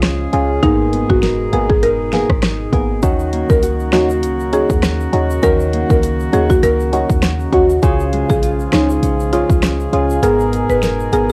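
Captured as a cassette home recording with light reverb, this sultry, hypnotic dancehall excerpt in Eb minor moves at 100 BPM with a lilting 16th swing, built on a punchy pop kit with fat snare and bright hats, a boomy sine 808-style bass, a fingerpicked nylon-string guitar arpeggiating through analog delay, and distant, roomy brass chords pumping under sidechain, while a hollow, chorused organ stab joins at 0.3 seconds, a woody, buzzing marimba carries the melody from 0.6 seconds, a soft egg shaker slips in at 3.0 seconds, and the kick drops out for the final second.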